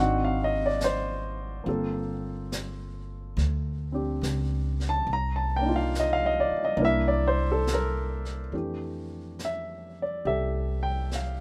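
Late-night and tender, this short jazz excerpt swings gently as a baby grand piano plays accompanying chords, its intimate, up-front sound carrying audible action noise, over a woody, thumpy pizzicato upright bass with gut strings. A vintage brush kit enters at 0.8 seconds, its high-tuned snare, brushed snare and hi-hat sitting back in a small room with a rolled-off top. The dry recording moves through rich extended harmonies, from Ab7#11 through Gm11, Cm11 and C9 before settling on Fmaj13 at 8.5 seconds.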